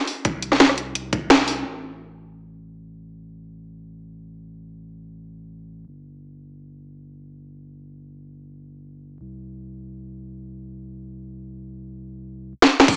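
In free time, this lush, melancholic liquid drum and bass excerpt in A minor, tuned to A4 = 435 Hz, opens on a drop where an up-front, overdriven electronic kit with cracking snare, bright hats, crash and rim click joins a gritty, thumpy sampler-style kick until a band accent at 1.3 seconds, after which a deep, sustained sine-and-triangle sub bass with octave carries on alone until a drum fill brings the kit back at 12.6 seconds and the kick at 12.9, the whole mix set in a moderate plate reverb with digital ambience and a small speaker sound.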